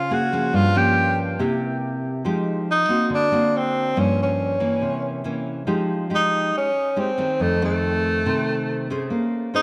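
A warm, subtoned tenor saxophone with vibrato and a touch of tape echo carries an intimate, smooth jazz melody over a full-bodied, fingerpicked nylon-string guitar with subtle chorus in this 9.6-second bossa nova fragment at 140 BPM in a straight 4/4, moving through rich chords such as Gbmaj9, C7b9, Fm9 and Bbm9 inside a dreamy mix soaked in plate reverb.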